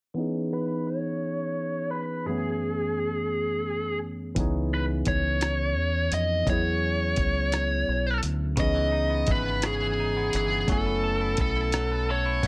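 Sultry and yearning, this six-eight R&B excerpt opens on a barky, lightly overdriven tine electric piano with lush chorus and plate reverb beside a dark, distorted bluesy lead guitar carrying the melody under a filter sweep, before a round dub fingered bass and a gritty, compressed soul drum kit with thumpy kick, hi-hat and rim click arrive at 4.4 seconds, the kick briefly dropping out just ahead of a clean, hollow-body semi-hollow guitar adding a second line from 8.6 seconds.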